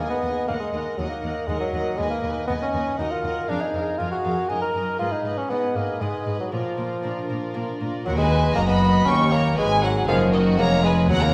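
Classical in a baroque-style concerto idiom, this dramatic, stormy passage is cut from a longer movement with solo episodes, moving at 119 BPM in 3/4 in Eb minor. A clear solo bassoon with light vibrato sits up front carrying the melody, while a violin section with a nasal, gut-string period tone also carries the melody higher up. A second violin section with a smooth top traces its own line beneath. A dark, distant viola section and a delicate fingerpicked lute, its doubled gut strings giving some octave shimmer, fill in the accompaniment from the background, over a reedy cello section holding the bass. At 8.1 seconds a rich double bass section with light vibrato joins the low end as the harmony turns from Eb minor through Eb7 toward Ab minor. The whole ensemble is heard from further back in a wet recital hall, its reverb lending the period strings a spacious, resonant halo.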